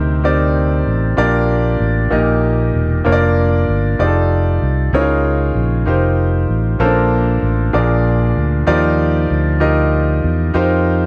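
This slow gospel excerpt moves at 64 BPM in a straight 6/8, set in Bb major with a hopeful, soulful mood. A concert grand piano carries the accompaniment throughout the 11.1 seconds, its clear tone ringing with long sustain and a deep low register. A fingered electric bass plays alongside it the whole way, round and amped, sitting up front with the piano. The harmony is rich with extended colours, passing from Eb6 and Eb/Bb through F13, Db69 and Bbmaj9 to Bb7 and Ebmaj9, then resting on an F9sus4 at 10.5 seconds. A light, small-room reverb and a dark overall production give the passage an intimate, churchy glow, and it feels lifted from a longer piece.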